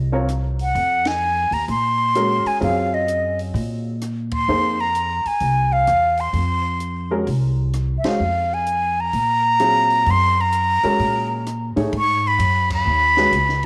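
A roomy spring-reverb glow surrounds this intense, cool modal jazz excerpt at 129 BPM with a swung 4/4 feel, where a breathy, straight-toned concert flute carries the melody up front over thumpy gut-string pizzicato upright bass, a clear, slightly detuned upright piano with short sustain, and a compact cocktail drum kit with dark cymbals, a high-tuned snare and punchy kick, the band hitting accents at 1.0, 4.2 and 8.0 seconds before the shift to a new section at 11.9 seconds.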